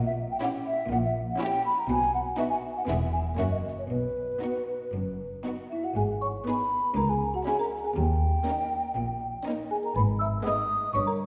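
A cinematic, playful and whimsical film cue in 4/4 with a straight feel, cut from a longer piece, its mood mischievous and magical. A pure, hollow concert flute sits up front on a second line throughout, while a lush violin section carries the melody with focused vibrato and a second violin section plays a smooth counterline in the background. A rich viola section fills in the accompaniment, and a distant cello section and a close, warm double bass section hold down the low end with bowed vibrato. At 5.7 seconds a woody folk marimba with soft mallets joins on the melody, its dry, rustic, round tone sounding as if from a boxy small room. The harmony turns from major to a darker minor colour at 6.0 seconds, and the whole recording sits in a wet scoring stage reverb, heard from further back in the room.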